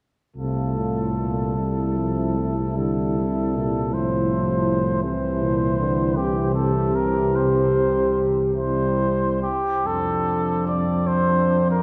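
In a rubato 12/8 at 45-55 BPM counted in dotted quarters, this tender, hymn-like classical brass band piece in F major, tuned to A4 = 443 Hz, sets a mellow, softly attacked cornet melody with light vibrato up front over a dark, distant French horn section on the second line, a smooth-topped euphonium and a close-miked trombone in the background, and a tuba bass up front, the ensemble heard from further back in a cathedral reverb of 6.8 s as the harmony moves from F/C to C and arrives on F at 9.9 s before the fragment cuts off at 11.8 s.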